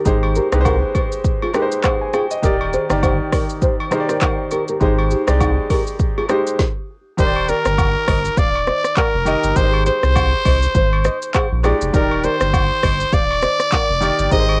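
Recorded dry at home on cassette, this sunny, breezy afrobeats snippet swings its sixteenths over up-front electronic drums with a deep kick, woody snare and metallic hats, a round sine sub bass with transformer saturation, a clear concert grand piano accompanying on Abmaj7 and Ebmaj7, and a thumb-plucked nylon-string guitar riff through analog delay. Agogo bells and woodblock sit band-limited in the background. After a brief stop at 6.6 seconds, a raspy, growling trumpet takes the melody at 7.2 seconds, punchy and up front with light vibrato, cassette tape colour and analog delay.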